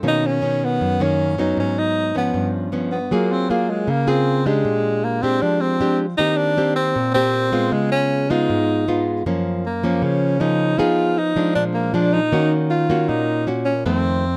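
A straight 4/4 bossa nova pulse at 156 BPM carries this sunny, romantic excerpt, where a warm, fingerpicked nylon-string guitar in classical style plays jazz chords such as Bmaj9 and G7#11 while a mellow tenor saxophone takes an up-front jazz solo with vibrato, subtone, scooped notes and a smooth top, both captured close, dry and detailed as the harmony settles into F# major at 9.3 s.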